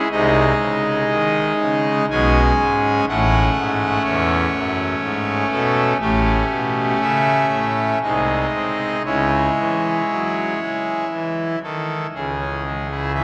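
A pipe organ on its trumpet stop sounds alone from the first moment, brassy and bright in a romantic voicing placed up front, carrying a solemn, grave, chorale-style classical passage in triple time across a span from A1 to G#5, its chords ringing in a long, wet cathedral reverb until this fragment of a longer piece breaks off at 13.2 seconds.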